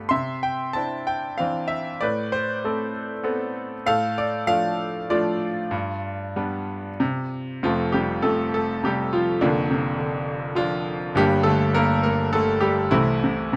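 Closely miked with light reverb and the audible action noise of the keys, this short excerpt is a relaxed, lyrical classical piece in 3/4 for solo concert grand piano, bright and intimate with a worn character and deep bass, played with rubato as its richly coloured harmonies move into a new key at 7.6 seconds.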